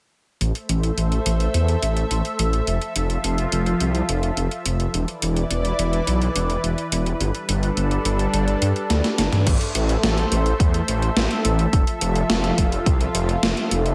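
A thick, detuned saw bass with chorus and a filter sweep opens this nostalgic, cinematic synthwave piece in A minor at 106 BPM, alongside an up-front, overdriven 80s digital drum machine whose crash, hi-hat, toms and gated-reverb snare sound sampler-style and roomy. From 0.7 seconds a lush, bright unison pad with a slow attack, phaser and chorus sustains chords through Am, Fmaj7, Bmadd11/E and Gadd9, pumping with the bass under sidechain. After a drum fill, a punchy, layered electronic kick drum with overdrive joins at 9.5 seconds as the progression returns to Am and Fmaj7, all under light reverb.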